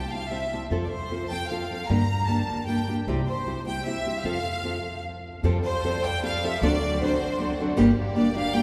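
A bright, biting violin section carries the melody up front over fingerpicked nylon-string guitar and a woody, growly pizzicato upright bass, opening this short mariachi excerpt in F major at 153 BPM in a rubato 3/4 with a romantic, proud air. After a stop from 5.0 to 5.4 seconds, a smooth symphonic violin section enters in the background with sustained chords as the harmony moves through Fadd9, D7 and Gm. The bass drops out at 7.9 seconds, and the whole is bathed in a long church reverb with some lossy compression artefacts.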